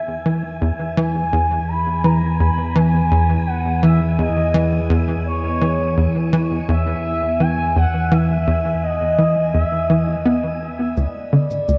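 Soaked in a dreamy plate reverb, this luminous, cosmic stretch of sequencer-driven space music in E major moves at 84 BPM, with a tight, punchy sawtooth sequencer bass riff up front under lush chorus and analog delay, a warbling, vintage analog drone holding E2, a smooth, expressive synth lead with vibrato and shimmer reverb carrying the melody, an airy, breathy wind-like noise texture hovering high, and dry electronic shaker and toms arriving only at 11.0 s as the harmony shifts from E to D.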